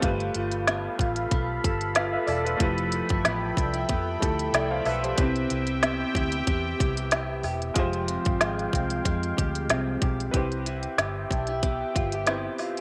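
A bright, slightly detuned upright piano with cassette-tape wear, a gently broken-up electric guitar bathed in lush chorus and vibrato, a dark, foam-muted round bass and an up-front electronic kit with a tight kick, woody snare and smooth hats open this nostalgic, laid-back bedroom-pop fragment at 93 BPM in C major, with a light swing on the sixteenths. A swirling, detuned sawtooth pad with a slow attack drifts in at 0.5 seconds, its sustained chords colored by phaser and chorus. Moderate spring reverb lends the whole a soft glow as the harmony moves from G9 through Fmaj9#11, Cmaj7 and Fmadd9 before settling back on Cmaj7 at 10.3 seconds.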